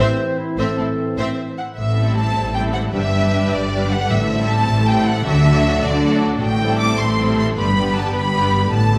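In 6/8, this swashbuckling, adventurous cinematic cue, cut from a longer piece, puts a lush, expressive violin section up front on the melody over a smooth second violin line, background violas, ringing fingerpicked harp arpeggios and a bowed foundation of cellos and woody double basses, while a mellow solo clarinet, dark, distant trombones and very quiet horn chords drop out by 1.6 s and a round, dry timpani touch arrives at 4.1 s, set within a moderate scoring-stage reverb.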